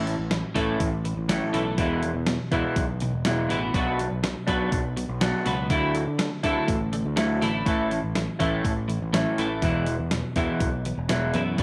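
A straight 4/4 pulse at 122 BPM from a crisp, up-front, tape-warm 8-bit drum machine, with its thumpy kick, fat snare and hi-hat, drives this wistful, carefree indie rock excerpt in A major, where a dark, slightly broken-up, lo-fi guitar through a small old amp and a bright, clean, compressed twelve-string electric with lush chorus and slapback echo both play riffs over a growling, overdriven fingered bass, cycling through A, E, Bm and Dadd9 in a moderate plate reverb.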